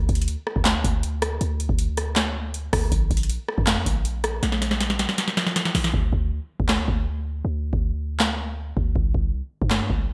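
A booming analog drum machine sits up front in this menacing, dark trap cut, its deep kick, crisp snare, handclaps, rim clicks and metallic hi-hats carrying a short room on the snare, clap and hats and a large-room re-recording, at 159 BPM in a half-time 4/4 feel. Underneath, a clean, sine-like 808-style bass with a fast attack and decaying, mellow tail moves between Bb1 and G2 from the start. A drum fill runs from 4.4 to 5.9 seconds, after which the hi-hats drop out for the rest of the excerpt, all under light reverb.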